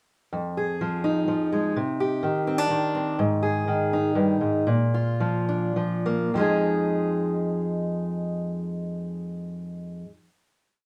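A lone fingerpicked steel-string acoustic guitar opens this short, melancholic folk piece in F dorian, moving in a reflective 3/4 at roughly 97-126 BPM with an alternating-thumb fingerstyle pattern. Sitting up front with a warm, auditorium-like tone and audible finger squeaks, it passes through Fm7, Cmadd9, Ab5 and Bb, slowing down from 3.2 to 6.3 seconds. At 6.3 seconds it settles onto a final Fm7 chord that rings out in a wet studio ambience until the piece ends just after 10 seconds.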